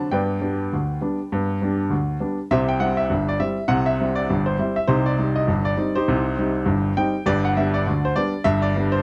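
A dark, warm production places a clear baby grand piano up front in a moderate studio reverb, its natural tone carrying a short sustain. This is a jaunty, lively ragtime excerpt in 2/4 at 101 BPM, with a swung sixteenth-note feel that gives the line a loose bounce. The piano plays solo throughout its nine seconds, ranging from G1 in the bass up to B5 in the treble. The harmony starts on G, shifts to C at 2.5 seconds, darkens to C minor at 4.9 seconds, then settles back on G near the close. Cut from a longer piece, the passage moves from a brief opening phrase into a longer second section.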